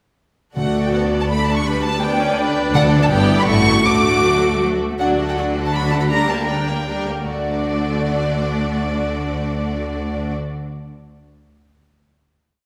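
A warm violin section carries the melody up front in this short, graceful and spirited classical-period movement in D major. It moves at a quick 3/4 pulse of 146-169 BPM with a rubato feel, its light vibrato and soft attack giving an intimate, close sound. Beneath it, a lush second violin section and a focused viola section weave independent inner lines from rocking two-note figures and sustained chords. A rich cello section sits in the background with sustained bass and passing notes, answering at phrase ends, while an intense double bass section with a smooth top doubles the bass line. Round, soft-mallet timpani strokes mark the bass notes until 3.1 seconds. The tempo slows from 4.4 seconds into a brief coda touched by a G minor colour over D, and the strings settle on a final D major chord at 7.3 seconds, all bathed in a wet recital-hall reverb.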